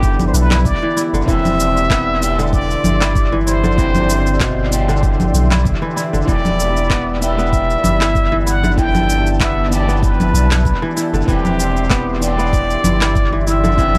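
Steeped in spring reverb and heavy echo, this hypnotic, earthy organic downtempo excerpt at 96 BPM sways with a light swing between Em7 and Cadd9/E, as a brilliant, forceful plunger-muted trumpet plays a wah-wah jazz solo with vibrato through analog delay over crisp, ringing fingerpicked kora arpeggios, a dark, slightly broken-up electric guitar and a smooth, detuned sawtooth pad that both pump beneath it, a round sine sub bass up front, and a tape-echoed bed of electronic shaker, congas and handclaps with a deep electronic kick set back in the mix.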